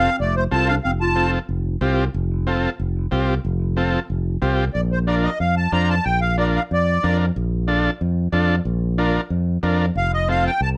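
Close, detailed and lightly reverberant, this joyful, sunny Latin excerpt in Bb major moves at 184 BPM over a growly, up-front fingered electric bass and a buzzy, overdriven vintage combo organ with heavy vibrato, while a reedy, sweet accordion with light tremolo tuning carries the melody in brief phrases, returning at 4.7 seconds, and a mellow clarinet in jazz style adds a smooth subtone second line for only the first 1.3 seconds.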